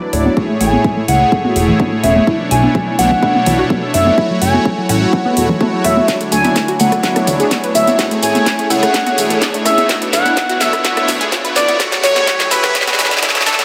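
Up front, a smooth, detuned supersaw plays phased, pumping stabs through this hopeful, uplifting progressive house build-up cut from a longer piece. Alongside it are a dark, vibrato-tinged, filter-swept synth lead melody with lush chorus and dub echo, a second line from a very quiet, pure FM bell, and a bright unison pluck arpeggio under its own filter sweep. Beneath these sit a faint sawtooth pad holding Amaj7, Bm11, F#m7 and Dmaj9 chords, a funky, ring-modulated analog bass, a layered kick, and a house kit with cracking snare and metallic hats. Dry, overdriven congas and rim click play in the background, and a very quiet riser enters at 5.6 seconds, just before a drum fill starts at 6.1 seconds, all inside a moderate hall reverb.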